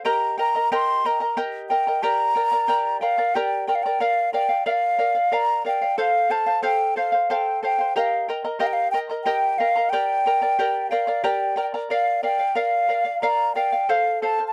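A dry, close recording with a 1970s studio character places both instruments up front in a nearly reverb-free space. This is melancholic, earthy Andean folk in a slow 6/8, moving at 61 beats per minute counted in dotted quarters with a straight feel. The charango provides the accompaniment from the first moment, its fingerpicked double strings giving a shimmering, octave-tinged sparkle between G4 and Bb5. A breathy wooden flute carries the melody from 0.1 seconds, close-miked and soft in attack, with a gentle vibrato in the narrow span from F5 to C6 and sitting a little louder than the charango. The harmony circles through Eb, Gm, Bb and F, and the same phrase begins again at 11.9 seconds before this passage, cut from a longer piece, ends at 14.5 seconds.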